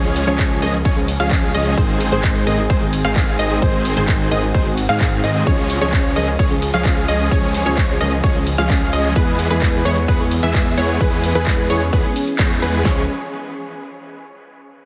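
This anthemic, uplifting slice of festival progressive house opens at 0.0 s straight into a drop, with a huge, euphoric supersaw lead riding up front over a thick, saturated detuned saw bass treated with chorus. At 130 BPM in Db major, a punchy kick and huge snare arrive at 0.4 s, layered with handclaps, while a second drum layer carries hi-hat, ride cymbal and shaker. Lead, bass and a lush unison pluck playing arpeggios in the background all pump with sidechain compression, and the lead and pluck trail dub echoes. A dark, mellow grand piano sits further back in accompaniment, its action noise audible and its tone vintage, pumping and echoing too, while a very quiet detuned pad sustains slow-attack chords beneath. The harmony moves from Db through Ab and back to Db, then shifts to E before returning home, with a band accent landing at 12.4 s. The mix is heavily compressed and radio-loud, set in a moderate digital hall reverb.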